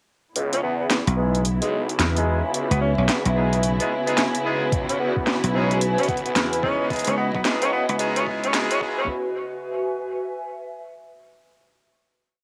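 A home cassette recording with moderate studio reverb carries this playful, funky glitch hop piece, which builds under filter sweeps on the horns and strings until 9.1 s before settling on a single final chord. An overdriven drum and bass kit with cracking snare and closed hats sits up front beside a punchy slap bass playing chopped phrases, while a swirling, detuned saw bass stays in the background and a gritty, pitched-down electronic kick joins at 4.7 s. Syncopated stabs from a bright horn section, short jazz phrases from a mellow, distant tenor saxophone with tape echo, lush bowed strings and a warbling, nostalgic pad round out the swung groove.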